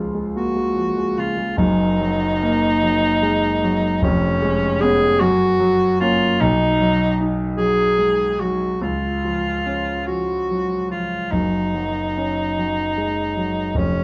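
Classical romantic duo music, lyrical and tender, in a slow, rubato 6/8 at about 47-51 BPM in F# major, where a polished, warm grand piano opens the accompaniment and a clear alto saxophone enters at 0.4 seconds to sing the melody with light vibrato in a classical style, while the harmony moves through F#, C#7/E#, B and C# before settling on F#5, all set in a moderate stone-room reverb with a dark production, in an excerpt cut from a longer piece.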